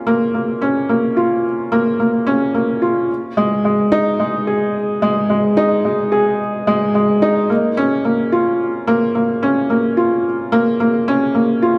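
A straight 4/4 pulse carries this hypnotic, intimate electronica fragment, where a lone felt-muted upright piano, soft and mellow with thin felt and short sustain, sits up front inside a wet echo-chamber reverb, building until a drop lands at 7.5 seconds.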